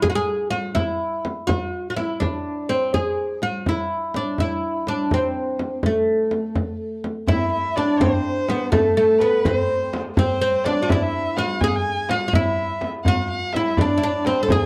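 A woody, fretless, plectrum-plucked oud with plate reverb carries the longing, hypnotic melody of this Persian modal ensemble piece at 83 BPM in a straight 6/8, over a deep, close frame drum played with soft hands, until at 7.3 s a clear, focused bowed kamancheh adds a second line with vibrato and portamento while a distant tombak joins in the background, in a dark, lightly reverberant production cut from a longer piece.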